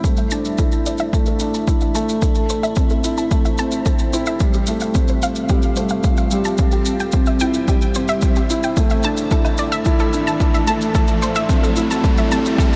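A felt-muted upright piano, soft and dark with a vintage thickness, plays an up-front riff over a blurred, evolving granular cloud pad and a punchy, overdriven electronic kick in this intimate, melancholic piano and strings electronica, moving at 110 BPM in A minor through Dsus2, Am, Fadd9 and C. A shaker and woodblock add a small-room acoustic texture, while a round, detuned analog pluck enters at 0.2 seconds with bright chorused arpeggios that pump with sidechain compression, tape echo trails and a filter sweep across the whole passage. The full 12.8 seconds is a build-up, with a background riser arriving at 8.6 seconds, and the mix sits in a huge ambient reverb, cut from a longer piece.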